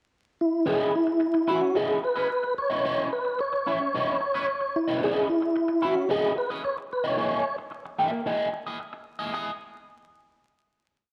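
A mellow, round tonewheel organ with key click, chorus vibrato and fast rotary speaker carries hook-phrase melodies up front in this hypnotic C# dorian funk piece at 111 BPM, joined at 0.7 seconds by a scooped, slightly broken-up electric guitar playing sixteenth-note rhythm with muted scratches through a wah pedal, moving from C#m9 to A#m7b5 before settling on a final Badd11 at 9.3 seconds in a dark echo-chamber ambience flecked with vinyl crackle.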